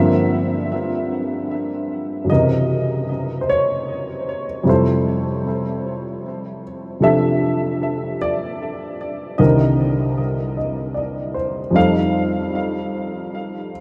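A solo baby grand piano opens this tender, romantic jazz ballad fragment in F major at a slow, swung 51 BPM in 4/4, its intimate, up-front tone with audible action noise and short sustain colored by analog chorus and delay as it spans C2 to F5 over Gm7, Gb7#11, Fmaj9, Cm7 and F9, all set in a huge ambient reverb that leaves the mix dreamy and soaked.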